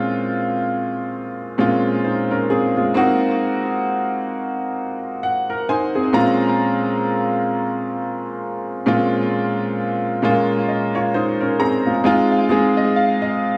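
A clear, worn, open grand piano sits up front in a small room ambience, bathed in moderate spring reverb and a heavy tape echo that makes for an echo-heavy mix. This is a late-night, sensual R&B piece in 4/4 with a swung sixteenth-note feel, heard here as a short cut from a longer work. The piano plays alone throughout, ranging from Bb2 up to Bb5, its long sustain blurring into the echo trails. The harmony moves from Bbm7 through Ab13 and back to Bbm7, then settles onto Bbm11 before turning to Fm7. Piano fills stand out from 4.8 to 6.6 and again from 11.1 to 13.6 seconds, decorating the unhurried chord changes.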